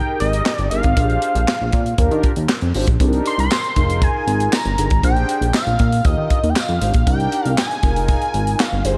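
A fat, detuned sawtooth lead with vibrato and slapback echo carries the melody up front in this slick, funky early-eighties boogie funk excerpt, riding over round, brassy synth brass with chorus that moves through Fm11, Bb13, Ebmaj9 and Cm9 chords. A glossy, chorused pulse-wave synth bass and a tight, polished funk kit with a high-tuned snare, handclaps and hi-hat come in at 0.2 seconds, and a distant, jingly tambourine sits in the background from 3.5 seconds. A lush hall reverb gives the mix a big arena sound.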